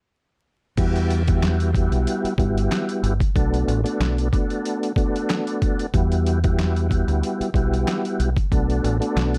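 Overdriven, pitched-down sampler drums sit up front in this dark, gritty boom-bap cut, with a thumpy kick, medium-tuned snare, hi-hat, handclaps and crash cymbal arriving at 0.8 seconds over a lightly swung groove. A deep, round fingered electric bass joins alongside a smooth tonewheel organ with key click, chorus vibrato and slow rotary speaker, its clean tone filtered through cassette tape as the harmony alternates between Emadd9 and Bm7. Very quiet, close finger snaps enter at 1.4 seconds, and the whole fragment carries light reverb and vinyl crackle in a dark, warm mix.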